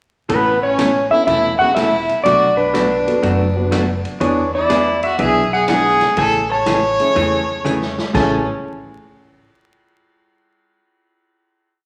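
A clean, dark lap steel guitar leads this short, playful western swing piece in A major at 122 BPM, carrying a motif-based melody with slide and volume swells, while a clear, earthy fiddle bows a harmony line mostly in sixths beneath it. A compressed hollow-body jazz guitar picks four-to-the-bar rhythm over a woody, thumpy pizzicato upright bass playing two-beat root and fifth, and a distant, roomy drum kit with a boomy kick keeps a backbeat and ride pattern. A mellow upright piano joins at 1.1 seconds with syncopated comping in the background, a drum fill at 7.7 seconds leads into a final chord, and the whole piece sits in a large studio reverb with vinyl crackle for a down-home feel.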